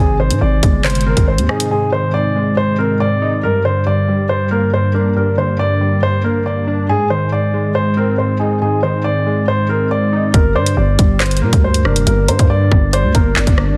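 A dark, mellow baby grand piano melody with delay drifts over warbling, detuned lo-fi synth keys with chorus as a growling 808-style bass and an electronic drill kit of hard-clipped kick, bright hats, handclaps and rim clicks briefly stir, then fall away until both return at 10.3 seconds and a soft, round, very quiet pluck slips in at 10.6 seconds, giving this tense, cold half-time drill cut at 139 BPM in G phrygian a dense, heavily limited finish.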